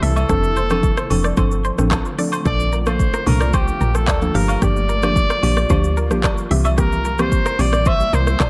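At a straight 111 BPM in 4/4, this mellow, hypnotic afrobeats excerpt in G dorian sets an up-front electronic afro-pop kit with deep kick, smooth hats, handclaps, rim click, shaker and toms under a round, dark log drum bass, while a clear, vintage-toned trumpet with scooped notes and analog delay carries the melody over a woody, chorused mallet-like synth pluck that stops at 7.8 seconds, a twangy electric guitar riff at the edge of break-up bathed in lush chorus and delay, a cloudy, detuned granular pad pumping in the background, and faint agogo bells and woodblock entering at 0.2 seconds, all in an echo-heavy mix moving through F6, Bbmaj7, Gm7 and C7.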